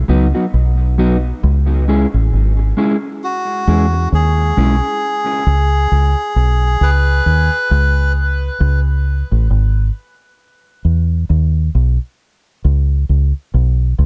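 Dub reggae at a slow 67 BPM in C# minor with a swung sixteenth feel, deep and spacious, built on a dark, round, foam-muted fingered electric bass that sits up front throughout this excerpt, while a clean, mellow electric guitar bathed in spring reverb and tape echo colors the opening until 4.8 seconds and a reedy, breathy, nasal melodica with tape echo carries the melody from 3.2 to 8.1 seconds over chords moving from B through C#m to Bsus2.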